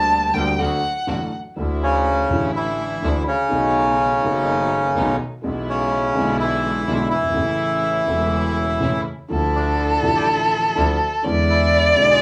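Dramatic and sultry, this tango moves at a rubato pace, and the 12.2-second clip is cut from a longer piece. A warm, bowed violin opens with a brief solo, singing up front with vibrato and portamento and a smooth top, then falls away before returning as a second line at 9.3 seconds. The reedy, mid-forward bandoneon carries the melody from 1.8 seconds, its dark tone sitting up front. Beneath it, a dark grand piano gives mellow, intimate accompaniment with audible action noise and a vintage smoothness, while a bowed double bass anchors the low end with a biting, intense edge and vibrato. A woody string section adds soft-attack stabs in the background, and the whole band plays live in one room, wrapped in a wet studio reverb.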